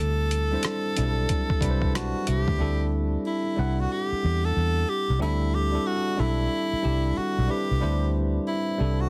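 A close-miked tenor saxophone carries the melody up front with a soft attack and vibrato, setting a relaxed, sensual neo-soul R&B mood at 92 BPM with a swung sixteenth-note feel in D mixolydian, cut from a longer piece. Beneath it, a worn, slightly out-of-tune tine electric piano plays through a combo amp and adds a fill from 1.3 to 2.6 seconds, while a dark, round, foam-muted fingered bass sits prominently up front in the mix. A gritty, overdriven sampler-style kit with a thumpy kick, hi-hat and rim click plays only from 0.3 to 2.6 seconds, all within a dry, dense, heavily limited modern master.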